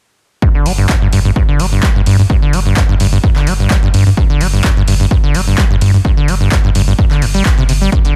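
A squelchy, sawtooth acid bass riff and an overdriven, punchy electronic kick drum open this gritty, driving acid house excerpt at 0.4 seconds, set at 128 BPM in 4/4 with a light 16th-note swing. The acid line sits up front, bright and resonant, with a filter sweep, fast decaying notes, sidechain pumping and a digital delay as it works over a G5 chord between G1 and G3. By 0.7 seconds a deep, round sine sub bass joins beneath it, sustained and also pumping from the sidechain. Handclaps and hi-hat from an overdriven analog drum machine arrive at the same moment, sitting further back than the forward kick; both drum parts carry the character of a large room. The tuning rests slightly below standard pitch, and the mix is dry, dense and heavily limited, giving the short section a hard, modern punch.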